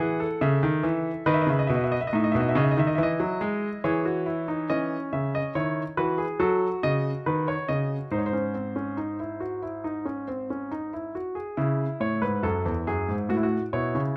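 A clear, polished grand piano carries this lively, elegant baroque-style fugue in three parts, playing alone from 0.0 to 14.2 seconds across a range from E2 to F#5. Cut from a longer piece, the passage moves at a straight 70 BPM in 4/4, opening in E major before turning toward C# minor at 4.7 seconds and closing on an F#m/A chord. The piano sits up front and intimate, with the audible noise of its action adding a present, tactile quality to the sound. Close, detailed microphones capture the instrument inside a moderate recital hall reverb, and a faint mains hum lies beneath it. The tuning rests slightly low, at A4 = 438 Hz.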